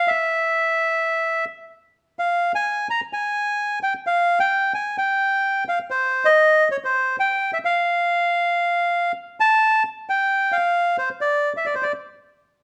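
A lone bandoneon opens this passionate, tense tango fragment, playing alone from 0.0 to 11.9 seconds in a reedy, bright, mid-forward voice pitched between C5 and Bb5 and sitting up front. The 4/4 pulse at 130 BPM is stretched with rubato, and the tune moves from F minor into F major at 9.6 seconds as a new section begins. A wet studio reverb with a 1.0-second tail places the listener further back in the room.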